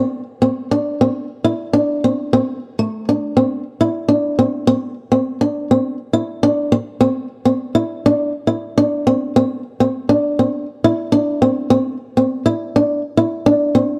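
Highlife excerpt with a warm, carefree mood, featuring a lone fingerpicked swing-style acoustic guitar, dark and boxy in tone and placed up front, heard in a dry, close 1970s-style studio recording with light reverb and small room ambience, moving from its opening section into a new one at 4.7 seconds.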